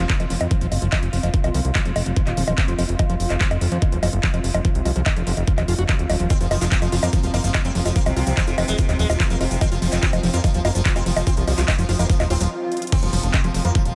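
Psychedelic trance in a straight four, intense and trippy, with an overdriven, knocking electronic kick and a fat, saturated analog bass up front, while a squelchy acid bass riff with tape echo, a cloudy granular pad and an overdriven drum kit of bright hats, bongos, handclaps and crash pulse behind them. At 6.3 seconds a buzzing, shimmering sitar melody arrives through phaser and analog delay alongside a distant, grainy tube shaker, and at 6.8 seconds a bubbling stepped-filter texture with 12-bit grit adds sustained chords. A very quiet swell, a brief stop and a drum fill lead into a drop with an impact at 12.9 seconds in this section cut from a longer piece.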